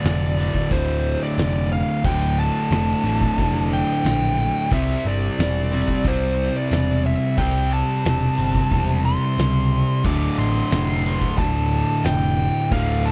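Stoner and doom metal at 90 BPM in D minor, this sludgy, heavy excerpt sets a picked fuzz lead guitar melody over two thick fuzz guitars, a bright, double-tracked crunchy overdriven guitar riff and a growly, tube-saturated picked bass, with an oversized low-tuned drum kit of punchy kick, fat snare and dark crash cymbal sitting in the background in a pumping stone room, the lead carrying slapback echo as the chords move from Dm to C at 4.7 seconds and back to Dm at 10.1 seconds.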